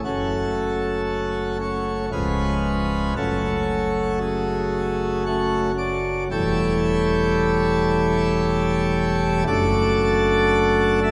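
Reverent and serene, this classical chorale-style excerpt for solo pipe organ moves at a slow 58 BPM in 3/4 with a rubato feel, cut from a longer piece and lasting about 11.1 seconds. The full plenum registration with mixtures sounds brilliant and up front, its baroque voicing carrying a distinct chiff across a range from C#1 to E5. A long, wet church reverb surrounds the organ as the harmony moves from F#m through C#7 and A7/E before settling on D/F#.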